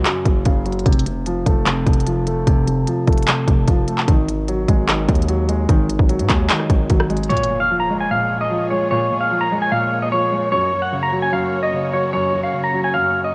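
A half-time trap groove at 149 BPM opens this menacing, eerie hip hop fragment in Bb minor, with an up-front electronic kit of hard-clipped kick, crisp hats, handclaps and rim clicks over a saturated, distorted 808-style bass sitting in the background, while a dark, mellow grand piano with deep low end plays accompaniment through a low-pass filter and cassette-tape coloring. At 7.3 seconds an electronic impact hits in the background as the bass drops out, the drums fall away moments later, and a clean, twangy electric guitar carries the melody up front, also filtered and tape-worn, over distant, veiled con sordino strings holding lush bowed chords. The home cassette recording sits in light digital reverb.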